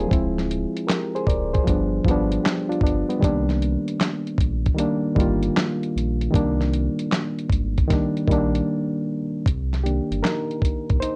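Lo-fi hip hop in C minor at 77 BPM with a swung, melancholic and nostalgic lilt, this short cut of a longer piece sets a reedy, low-pass-filtered electric piano up front over a deep, sustained, tube-saturated sine sub bass with an octave and a gritty, 12-bit sampler drum kit of thumpy kick, fat snare, hi-hat and handclaps, moving through Dm7b5, G7 and Cm7 on worn, warbling cassette tape before a brief break at 8.7 seconds and a piano solo from 9.5 seconds.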